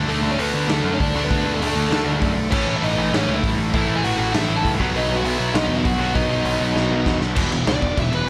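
Three picked electric guitars, a background cranked stack with overdrive, a very quiet double-tracked compressed fuzz, and a very quiet tight distorted one, open this short, upbeat, rowdy punk rock clip on a riff over D5, A and B. A growling, overdriven electric bass drives underneath while a dark, smooth lead guitar carries the melody and an up-front garage drum kit, gritty and punchy in a stone room, holds a half-time feel. The kit hits a fill at 6.8 s before the chords land on E5 at 7.4 s, all under light reverb.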